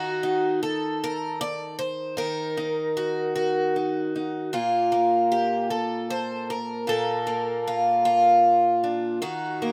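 Set in an unhurried, straight-feel 6/8, this peaceful folk excerpt features a lone picked twelve-string acoustic guitar playing up front, its fresh strings giving a bright, shimmering, octave-doubled ring with a boxy parlour body and audible finger squeak. The opening phrase is free of chords before settling onto a Bbmaj7 at 4.5 seconds and shifting to an Ebm at 9.2 seconds, all wrapped in a light reverb.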